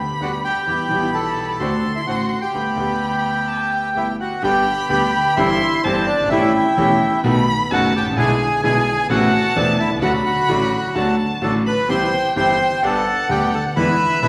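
Tango in G major at 129 BPM with a rubato feel, elegant and nostalgic, cut from a longer piece, where an up-front reedy bandoneon carries the melody over clear, deep-bassed concert grand piano accompaniment, a second bandoneon adds background stabs, and a distant solo violin with vibrato and portamento sings an expressive second line from the first moment, all in the wet reverb of a recital hall, moving from G through Em and D7 before shifting at 4.4 seconds into a passage touching A7, B7 and E7.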